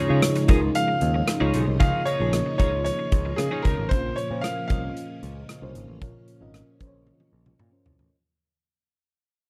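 A punchy, up-front big rock drum kit drives this moody, dramatic 1980s-style pop excerpt in Bb minor at 114 BPM in a straight 4/4, with hi-hat, kick, rim click and toms, closing on a drum fill from 7.1 seconds. A growly, amped picked electric bass sits up front, while a clear, smooth concert grand piano carries the melody with a slapback echo until 7.5 seconds. A soft, round FM electric piano, dark and treated with chorus and phaser, fills out the accompaniment, and a lush vintage string machine holds sustained chords in the background through an ensemble chorus. A bright, twangy twelve-string electric guitar plays a clean riff with analog chorus and slapback echo, stopping at 3.8 seconds, just before the harmony moves from Dbadd9 to Bbmadd9. The dry, close 1970s-style studio sound carries a fade-out across the whole clip, which is cut from a longer piece.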